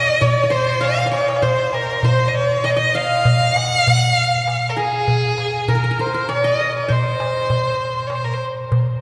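Cathedral reverb with a long 4.6-second tail fills this church-recorded cut from a longer Arabic maqam ensemble piece in C maqam bayati, moving at 99 BPM in a straight 3/4 with a hypnotic, melancholic mood. A single bowed violin carries the melody up front, rich and expressive with vibrato and portamento, while a brilliant, plectrum-plucked qanun with triple strings plays a quieter second line in the same register. A crisp, close, dry metal-shell darbuka keeps time, with a drum fill from 0.8 to 1.4 seconds.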